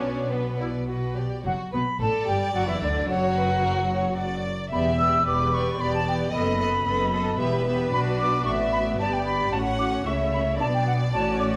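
A wet recital-hall reverb surrounds this cheerful, spirited excerpt of a quick classical-period movement in triple time, played with a flexible, rubato feel by a chamber-sized orchestra. Rich bowed violins carry a focused melody over a second violin line marked by expressive portamento, while smooth, somewhat distant violas, even cellos and dark, soft-attacked double basses fill in the accompaniment and bass. At 1.5 s a pure, silvery concert flute joins with a tongued second line from a distance, its vibrato sounding until 11.5 s, just before the close at 11.6 s.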